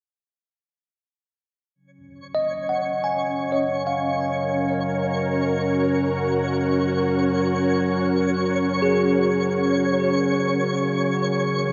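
This serene ambient piece in free time and Gb major, cut from a longer work, opens as a synth drone fades in from 1.8 seconds: a vintage analog tone, warbling and evolving, softened by chorus. Almost at once a twinkling granular texture sparkles high above with an octave-up shimmer, and a bell-like tine electric piano adds clean, bright arpeggios that trail into a diffuse ambient delay. By 2.7 seconds an ethereal, airy pad sits up front with mellow, detuned sustained chords thickened by ensemble chorus. Beneath it all, a deep, ominous rumbling bass drone stays in the background. The harmony rests on Gb and then turns to Dsus2 near the end, all bathed in a lush hall reverb and a dark, warm production.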